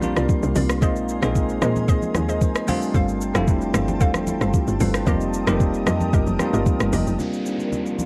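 A dark, dry mix carries this short, late-night, soulful amapiano cut in C minor at 113 BPM, where a bell-like tine electric piano and a punchy, tight log drum bass sit up front over a soft-kicked electronic drum kit with metallic hats, rim click and shaker, while a glassy FM pad sustains ethereal chords, a hollow, detuned square pluck stabs through chorus and digital delay in the background, very quiet low-tuned congas ring, and from 7.2 s the bass and pluck drop away as a downlifter falls into the returning C9sus4.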